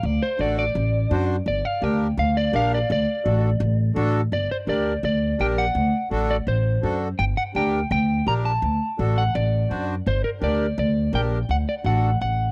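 A straight 4/4 cumbia pulse at 168 BPM drives this passionate Latin piece in G harmonic minor, cut from a longer piece, where a woody pizzicato upright bass sits up front beneath a slightly broken-up, picked electric guitar that carries the melody with spring reverb and tape echo and takes a solo over the first 4.3 seconds, while a reedy, dark accordion with slow beating enters at 0.4 seconds to fill out the harmony, all captured in a dry, close 1970s-style studio sound.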